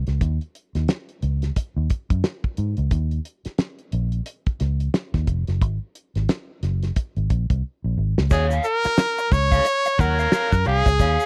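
A dry, close 1970s-style studio sound with small room ambience frames this hypnotic, sly funk excerpt, swung on the sixteenths. A dark, foam-muted fingered electric bass and a cloth-damped, thuddy drum kit with a fat snare, tight kick and dark cymbals sit up front over Ebm7 and Ab7sus2 chords, until a drum fill at 7.6 seconds leads into a new section at 8.3 seconds. There a brilliant, smooth-topped trumpet takes the solo with vibrato, backed by a crunchy overdriven guitar played through wah and a grainy egg shaker in the background, over an Ebm9 chord.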